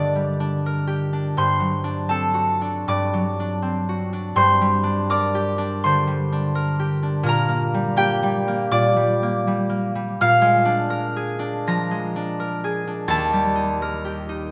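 Mysterious and gentle, this classical excerpt for solo concert harp unfolds in G minor at 83 BPM in 4/4, taken with a rubato feel. The harp is the only voice, bright and ringing, fingerpicked and placed up front, ranging from Eb2 to Bb6 across its 14.5 seconds. The harmony moves from G minor through D7 over G, back to G minor, then Gm/Bb and Bb7 before arriving on Eb at 13.1 seconds. A wet church reverb with a 2.6-second decay surrounds the acoustic instrument, lending the notes a long, resonant halo. Cut from a longer piece, the passage feels quiet and searching, stopping just as it settles on its new chord.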